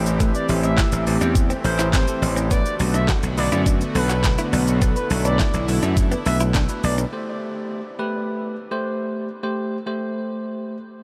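A dreamy, reverb-soaked mix carries this driving, energetic dance-pop excerpt in A dorian at 104 BPM, which opens on a drop over Am7 and Bm7 chords. Up front, layered electronic drums with a knocking kick, fat snare, crisp hats, handclaps and shaker pair with a punchy, bright slap bass. Around them sit a shimmering retro pulse-width pad and a clean, bell-like tine electric piano, both pumping in the background, while a very quiet, compressed picked guitar riff plays beneath a smooth, mellow sawtooth lead with vibrato, portamento and a diffuse delay that carries the melody. Those parts drop away by 7.1 s, leaving the electric piano alone until 10.8 s.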